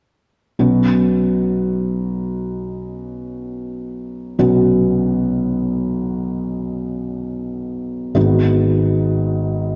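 A dark, hushed recording steeped in a wet concert-hall reverb opens on a felt-muted upright piano, up front and intimate with thick felt and audible action noise, drifting in free time through a melancholic, longing pop excerpt cut from a longer piece, resting on Bsus2 from 0.6 seconds before settling onto G#m7 at 8.2 seconds.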